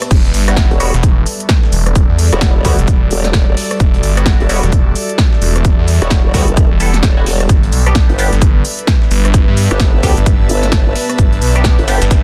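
Bouncy and swaggering, this bass house excerpt at 130 BPM in E minor swings its 16ths over a punchy, up-front electronic kick, a big-room dance kit with crisp hats, snare, rim click and crash, and a gritty sampler-style breakbeat kit with high-passed hats and shaker tucked behind, while a swirling, saturated phased saw bass and a wobbling formant-sweep bass pump to the sidechain, a nasal band-passed chord stab trails dub echo, and a deep, moody reverb-soaked pad sits beneath an airy, breathy pad as the harmony moves from Emadd9 to G at 7.5 seconds in a dense, heavily limited mix with faint mains hum.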